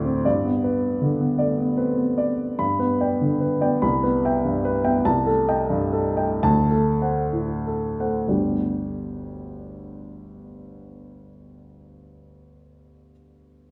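A baby grand piano plays alone from the start, its tone warm, natural and up front, in a romantic classical character piece in G major and 6/8, moving with rubato between 28 and 53 BPM in dotted quarters. The mood is hopeful and passionate: the pace eases from 1.4 seconds as the harmony passes from G through Cmaj7, Am7b5/C and D7, then settles back on G at 8.3 seconds, with the piano spanning G1 to B5. A wet recital hall reverb surrounds the instrument, and this short passage is cut from a longer work.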